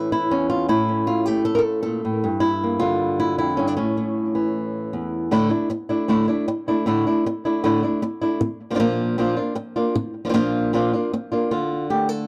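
In a straight 4/4 at 155 BPM, this intense, fiery flamenco fragment cut from a longer piece features a lone fingerpicked acoustic guitar with fresh strings, placed up front with analog delay and light reverb in a dry, gritty recording, moving through A, Gm and back to A before shifting at 5.3 seconds to Asus4 and Bb and landing on Dm at 11.5 seconds, all in A phrygian dominant.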